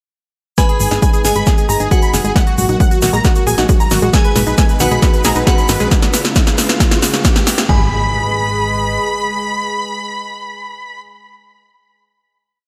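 This euphoric, emotional uplifting trance piece in G# dorian at 135 BPM opens at 0.6 seconds with a huge, thick supersaw riff in sixteenths over a pedal note, doubled by a very quiet, clear grand piano and a crystalline FM synth bell in octaves, over a lush, warbling unison pad, a round analog pluck step sequence under a filter sweep, a punchy four-on-the-floor electronic kick, a big-room dance kit with crisp hats and backbeat snare, and a grainy hand-played tube shaker, joined at 0.8 seconds by a galloping sawtooth bass, with the supersaw, pad, pluck and bass pumping from sidechain, while a very quiet riser and impact join at 3.8 seconds before the drums fall away at 7.7 seconds to leave a G#m final chord in light digital ambience.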